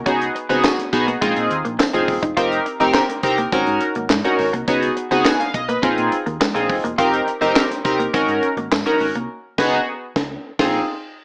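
Early-eighties boogie funk at 104 BPM in 4/4, this short cut from a longer piece feels funky and danceable, riding a cycle of suspended ninth chords that moves from Db9sus4 through Bb9sus4, F9sus4 and Ab9sus4. A glossy, chorused polysynth sits up front as the loudest part, blending pulse-wave and sawtooth tones with pulse-width modulation and a filter sweep, its fast attack giving way to sustained, evolving chords. A tight funk drum kit, also up front, brings a high-tuned snare, a tight kick, hi-hat, handclaps and crash cymbal, with gated reverb on the kit. Underneath, a hollow-body short-scale fingered electric bass sounds round and punchy with a dark, amped tone, while a clean electric guitar plays a dark, fingered riff bathed in lush chorus until 9.3 seconds. A jingly tambourine adds color in the background from 0.6 to 8.9 seconds, and the band hits an accent from 9.3 seconds to the close, all heard through light small-room reverb and a small-speaker sound.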